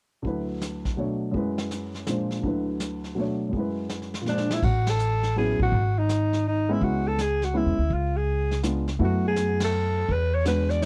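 Small-group swing and bop jazz in 3/4 at 165 BPM, this short excerpt from a longer piece in A major feels warm and sophisticated, with a lilting swung waltz pulse. A smooth, vintage-sounding grand piano and a brush drum kit with dark cymbals, a punchy kick and a rolled-off top open together at 0.2 seconds, the piano comping through rich chords such as D6, Bm9, F#9sus4 and Bb7. A drum fill at 4.3 seconds ushers in a raspy, growling alto saxophone carrying the melody with vibrato, its gritty tone sitting up front yet carrying a distant, roomy air. The woody pizzicato upright bass joins at 4.6 seconds as the harmony moves through A69, C#m7, C#7b9, F#m11 and E7, with band accents punctuating the groove. The whole session has the dry, close sound of a 1970s-style studio in a small room.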